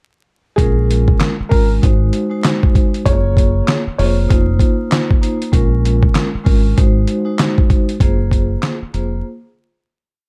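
A gritty, tough boom-bap hip-hop groove in Bb minor at 97 BPM opens at 0.6 seconds with a compressed, overdriven sampler-style drum kit up front, its thumpy kick and fat snare layered with handclap alongside hi-hat, under a round, deep dub electric bass line with muted ghost notes. A woody, intimate upright piano loops a short melody with slapback echo until 4.2 seconds, while a ringing vibraphone repeats chopped chords through a Bbm7, Ab7, Gbmaj9#11 and F7sus4 cycle like a sampled loop. The dark, warm production carries vinyl crackle, and the track fades from 8.0 seconds into a brief break before ending at 10.3 seconds.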